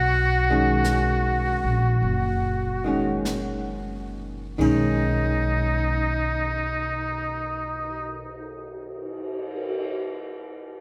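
Jazz ballad, intimate and tender, at a slow swung 43-55 BPM in B major, with a buzzy, metal-muted trumpet carrying the melody over woody, growly pizzicato upright bass, dark, clean hollow-body archtop guitar from 0.5 s, and airy brushed drums with dark cymbals entering at 0.8 s, the tempo slowing through the first 4.6 s and the whole bathed in a cathedral-like reverb.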